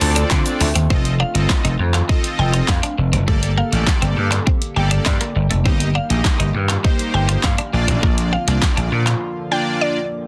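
Confident and driving, this dance-pop passage rides on a punchy, layered electronic drum kit with a fat, softly clipped snare, handclaps, hi-hat and shaker, and an up-front, amped slap bass with sidechain pumping. A bold, detuned sawtooth polysynth and a very quiet, shimmering pulse-width pad carry the chords over Dm7, F7, Gmadd9, Eb/G and Bb. A bright qanun, played with fingerpicks and treated with dub echo, ripples through arpeggios until 2.4 s, while a clean twelve-string electric guitar plays a riff through lush chorus, and from 1.2 s a woody, round FM pluck carries the mallet-like melody with its own chorus and echo; the dense, dry, heavily limited mix thins into a short break as the drums, bass and guitar drop out around 9.2 s.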